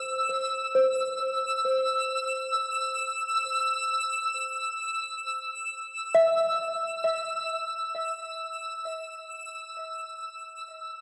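In free time, this serene ambient fragment from a longer piece opens on a C chord that dissolves after 1.7 seconds. A small celesta plays bell-like, sweet arpeggios between C5 and E5 with soft felt hammers and tape echo, up front until 9.3 seconds. A twinkling granular layer with an octave-up shimmer holds a sustained E6 through its own reverb to 11.0 seconds, all bathed in a lush hall and tuned to A4 = 441 Hz.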